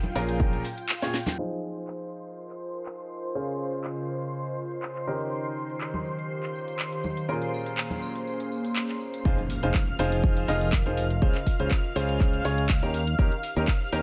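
Piano house at 122 BPM in F minor, bittersweet yet energetic, with a light 16th-note swing and a chord cycle of Bbm7, Fm7, Dbmaj7 and Eb7, cut from a longer piece. A clear, open concert grand piano sits up front carrying the riff, its deep low end touched by delay and sidechain pumping, while a silky, detuned analog string pad holds sustained chords with ensemble chorus and vibrato. From 2.4 s a warbly, lo-fi tape-like pad adds a dark, nostalgic texture with chorus and its own reverb. The house drum kit runs throughout with a cracking snare, metallic hats and handclaps, joined in stretches by ringing tambourine and congas with a small-room sound. After a drum fill, a filter sweep runs up to the drop at 9.3 s, where the punchy electronic kick and a bright, direct fingered electric bass arrive in full, marked by a very quiet impact. The mix carries light reverb and digital ambience under a low-pass filter.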